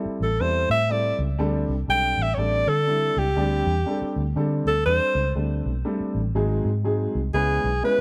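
Swung eighth notes at 121 BPM in 4/4 propel this passionate, driving, uptempo 1960s-style soul passage, cut from a longer piece and set in light reverb. A round, foam-muted vintage electric bass sits up front beneath a woody, boxy upright piano with long sustain, while a clear, close-miked alto saxophone plays a jazz-style solo with vibrato and a soft attack until 5.4 seconds. The harmony moves from Am7 to D7sus4, then shifts to G#7 at 6.3 seconds and C#m7 at 7.3 seconds.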